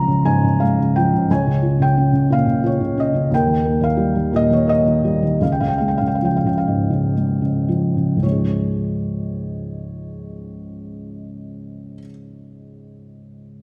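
Classical solo piano in a lyrical, hopeful mood, this excerpt is cut from a longer piece and moves in a flexible rubato 3/4, its tempo ranging from 53 to 90 BPM. A felt-muted upright piano carries everything alone across a span from Db2 to C6, tuned to A4 = 439 Hz, with a soft, mellow and intimate tone that leans dark from the thick felt. The instrument sits up front, close enough that its action noise is clearly audible. Set in Db lydian, the harmony moves from Db through Bbm/Db to Eb and back to Db, with the pace slowing between 3.3 and 8.2 seconds before a new section begins at 8.2 seconds. A wet reverb with a 1.9-second decay places the piano in a church or concert hall, wrapping its close, muted sound in a spacious glow.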